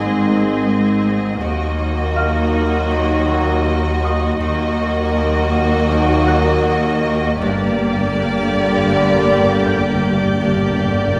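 Muted violins open this ominous, mysterious suspense cue, carrying a veiled melody over a softer second violin line, with lush violas, cellos and double basses bowing dark harmony and bass beneath clear trombones, shadowy French horns and a ringing, fingerpicked Celtic harp riff in the background. A close, lush high violin texture joins at 1.4 seconds and a very quiet, mellow felt-muted upright piano at 2.2 seconds, before close, dry timpani enter with a fill at 7.4 seconds. The whole ensemble sits in a reverberant recital hall, and the cue is cut from a longer piece.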